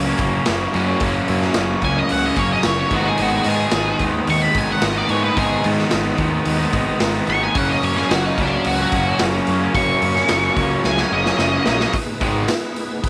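A straight 4/4 groove from a raw garage drum kit anchors this swaggering, gritty classic rock piece, with a punchy kick, medium-tuned snare and hi-hat sitting up front, saturated and rolled off on top, in a bright stone room that pumps. A crunchy, bright guitar plays the riff up front, joined further back by a hollow-bodied semi-hollow guitar, while a fuzz-laden picked bass adds a warm, amped bottom. From 1.8 seconds, an octave-fuzz lead guitar takes a dark, distorted solo over the riff, and a drum fill at 10.8 seconds carries it toward a short closing passage. A very quiet tonewheel organ joins at 2.9 seconds with full, lightly driven sustained chords, its slow rotary speaker, chorus vibrato and key click barely surfacing. The harmony moves between F# and G#m in a dry mix with little reverb, and the recording is cut from a longer piece.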